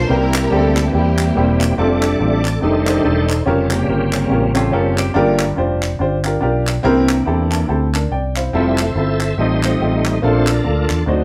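A bright, shouting tonewheel organ with fast rotary speaker, light overdrive and chorus vibrato fronts this soulful, reverent uptempo gospel excerpt, holding sustained chords before taking a solo from 1.8 seconds after a lush, bowed string section carries the opening melody. A growly fingered electric bass and a woody, slightly detuned upright piano sit up front, the piano adding a fill around 7.3 seconds, while crisp group handclaps drive the swung 4/4 groove and a twangy clean guitar flickers briefly in the background. The band sounds like it's playing live in one room, wrapped in a short, wet studio reverb.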